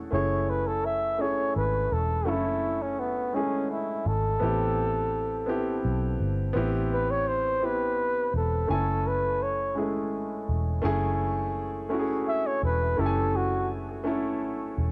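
A home cassette recording with light reverb and small-room ambience frames this sultry, yearning slice of slow six-eight R&B at 56 BPM in F# minor, cut from a longer piece. A polished grand piano, given a cassette-tape tint, and a dark, round, foam-muted electric bass sit up front under chords moving from F#m9 to Am9 and back at 8.7 seconds. A breathy, whispered flugelhorn carries the solo melody from 0.1 seconds, mellow and intimate with soft attacks, vibrato and a touch of tape echo, until it stops at 13.7 seconds.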